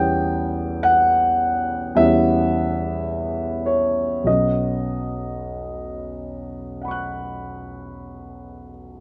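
A clear concert grand piano opens this short, rubato excerpt of impressionist solo classical music in B major, drifting at roughly 46-55 BPM in 4/4 with a serene, hazy mood. Sitting up front with an open sound and deep bass, the piano spans B1 to F#6, moving from Em6 to Badd9 at 4.3 seconds. Light reverb gives the room a soft glow across its nine seconds.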